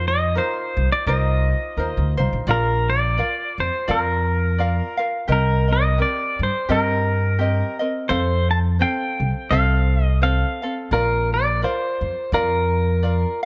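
A clean, twangy electric pedal steel guitar carries the melody up front, played with fingerpicks and slide and shaped by volume swells in this languid, relaxed Hawaiian piece at 85 BPM, with a gentle swing in Bb major. A bright, fingerpicked acoustic ukulele adds light accompaniment, while a woody, thumpy pizzicato upright bass on gut strings sits prominently underneath as the chords move from F7sus4 through Bb, Cm7 and F back to Bb. Light reverb and a dark, warm production give the whole 13.5-second passage an easygoing, intimate glow.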